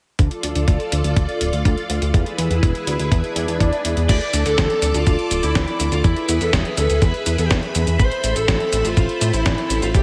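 Nostalgic and bittersweet, this italo disco clip moves in a straight 4/4 and is cut from a longer piece. A gritty, thumpy electronic kick sits up front beside a glossy, chorused synth bass built from pulse and sawtooth tones with a filter sweep, while a sampler-style kit adds cabasa, hi-hat, crash cymbal and a fat snare bathed in gated reverb. Above them, a lush vintage string machine holds sustained chords with slow attack, a sub octave and ensemble chorus, moving from Dm to E. An electronic swell sounds from 3.3 to 4.1 seconds, and at 4.1 seconds a dark, lo-fi lead guitar through a small cranked amp takes the melody with overdrive and digital delay. The second half runs through D5, E and Amadd9 under light reverb.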